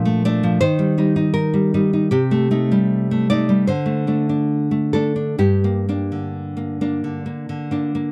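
Romantic solo classical guitar in 4/4, this brief passage from a longer piece has an intimate, melancholic mood and a freely flowing rubato feel. A single nylon-string guitar carries everything, fingerpicked in a classical manner and spanning G2 to D5 across the full 8.1 seconds. Its tone is acoustic, full-bodied and up front, with light reverb around it. The recording is dry and close, in a 1970s studio style. The harmony moves from Bbmaj7 through Eb6, Am7b5/C and a bare D5 at 3.7 seconds, then settles on G minor at 5.4 seconds.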